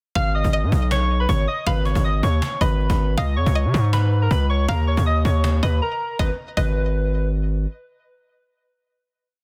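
Trap hip hop in G# dorian at 159 BPM with a half-time feel, dark and menacing, where a distorted, saturated 808-style bass sits up front with long sub notes and pitch slides under a snappy acoustic cajon beat, while warbling, nostalgic lo-fi synth keys with chorus and delay carry a looping melody doubled in octaves, a twangy, string-like resonator pluck adds a sparse counter-melody, and after a brief break at 5.8 s the track settles on a final G#m chord from 6.2 s in a dense, heavily limited, dry mix.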